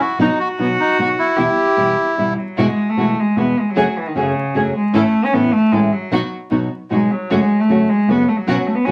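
Vinyl crackle and a moderate small-room reverb frame this passionate, melancholic tango fragment, which moves with a rubato feel at 153 BPM in 3/4 and E major. A reedy bandoneon carries the melody only until 2.3 seconds, with a rich, bowed gut-string cello in period style up front as the second line. An acoustic flamenco guitar with fresh strings adds thumb-plucked accompaniment, while a dark studio string section plays soft-attack sul tasto stabs with light vibrato. From 2.6 seconds the cello takes a solo through chords such as Eadd9, F#madd9 and A.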